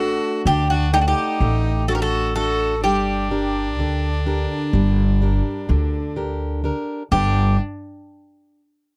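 Greek folk in a melancholic, wistful 9/8 at 126 BPM in G harmonic minor, this excerpt from a longer piece puts a metallic, double-strung bouzouki melody up front over an airy, lightly vibratoed violin second line, a fingerpicked acoustic guitar accompaniment and a woody, thumpy pizzicato upright bass, all captured in a dry, close 1970s-style studio sound as the harmony moves from D to Gm at 2.8 seconds and arrives on G at 7.1 seconds.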